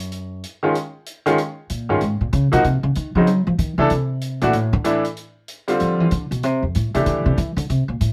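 A fast swung pulse in four drives this spiritual, intense modal jazz excerpt, with a faint, natural hi-hat keeping time throughout. The upright bass takes the solo from the opening to the close, its woody, pizzicato tone on steel strings sitting up front, while a bright upright piano, brilliant and intimate with audible action noise, comps from 0.6 s to 7.4 s. Light reverb surrounds the sound as the harmony moves from Ebm11 through D7sus2 to G13sus4.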